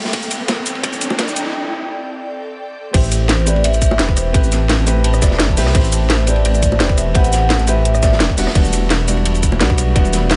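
Heard in a small room with a dulled top end, this soulful, rolling liquid drum and bass excerpt at 171 BPM in A dorian opens on a build-up: a clear, worn grand piano with digital delay and an ethereal, airy pad with chorus, phaser and sidechain pumping sit over a gritty, saturated breakbeat kit, a tight layered electronic kick and a drum and bass kit with a cracking snare and metallic hats, while an up-front riser and a drum fill lead into a break at 1.5 seconds. The drop arrives at 2.9 seconds, when a deep, rumbling detuned saw bass takes the front and a mellow, ringing vibraphone with soft mallets and slow motor vibrato carries the melody in the background. Round, low-tuned bongos fill out the groove as the chords move from Am7 to Em7 at 8.4 seconds.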